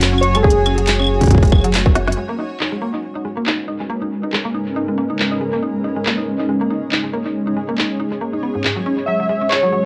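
A cloudy, blurred granular pad on tape-worn sustained chords opens this eerie, cerebral IDM fragment alongside a rubbery, hollow square bass that drops out at 2.2 s and an up-front drum kit with a woody snare, crisp hats, claves and handclaps under a gentle swing. A round, mallet-like pluck carries chorused, tape-echoed arpeggios throughout, while warbling lo-fi keys with 12-bit grit and analog delay state a nostalgic melody at the start and return near 9.1 s. A tight, overdriven kick punches in briefly early on, and after a drum fill and band accent the section shifts at 2.2 s as a filter sweep reshapes the pad.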